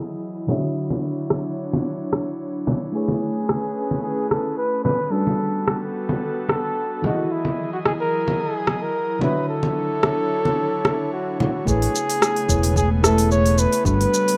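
Sunset chillout at 110 BPM in A major, blissful and sunny, where a round FM electric piano with phaser, tape colour and shimmer reverb sits over an airy, breathy pad through a filter sweep, congas and a crisp-hatted, overdriven R&B kit with rim click and shaker join early, a mellow flugelhorn with vibrato carries the melody from 3.0 s, and a punchy fretless bass and soft electronic kick arrive at 11.7 s, the whole piece moving through Dmaj9, Amaj9, Gmaj9 and Emaj9 chords in a rough, low-passed home-demo mix cut from a longer piece.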